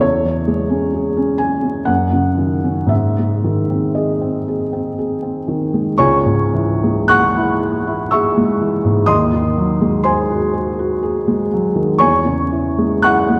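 A long church reverb and a vinyl crackle surround a felt-muted upright piano, which sits up front with a mellow, intimate tone as it plays alone from 0.0 to 13.4 s. This yearning, wistful romantic nocturne in C# minor moves in a rubato 3/4 at roughly 52-68 BPM, with its range spanning C#2 to F#6. A second passage begins at 6.0 s, and the piece is cut from a longer work.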